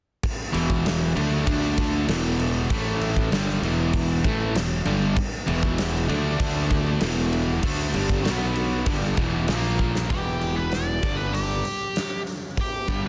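Hard rock with an aggressive, menacing edge, this short cut from a longer piece drives along at 97 BPM in 4/4 with a straight feel in E minor. A huge arena drum kit sits up front in a pumping hall, with a punchy kick carrying soft clipping, a medium-tuned snare, hi-hat and bright crash cymbals. An overdriven, double-tracked semi-hollow guitar picks the main riff from 0.5 seconds, its hollow-body tone ringing bright over power chords that shift among E5, D5, A5, B5 and A#5 around an Em center. Underneath, a fingered electric bass growls with fuzz and overdrive, direct and amped in the low register. After a drum fill at 9.8 seconds, a biting lead guitar enters at 10.1 seconds with a picked, overdriven melody high above the riff. Studio reverb and a dense, heavily limited modern master give the whole a crowded punch.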